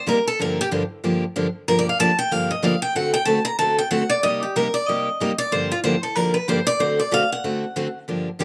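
Swinging and fiery, this short jazz excerpt moves at a brisk 187 BPM in 4/4 with a light swing feel, set in G minor and tuned slightly below standard pitch. Two picked steel-string acoustic guitars carry the whole thing: a bright parlour guitar plays the melody from F4 up to Bb5, while a full-bodied dreadnought with fresh strings handles accompaniment from G2 to A4, entering at 0.1 seconds. The melody guitar sits a touch higher in level and takes a solo through the passage, with the harmony moving through Gm7, D7 and Cm7 before returning to Gm7 and D7. Both instruments sound up front, and the accompanying guitar lets slight finger squeak come through. The recording is dry and open-air, with little reverb and an absence of room sound, leaving the picking crisp and immediate.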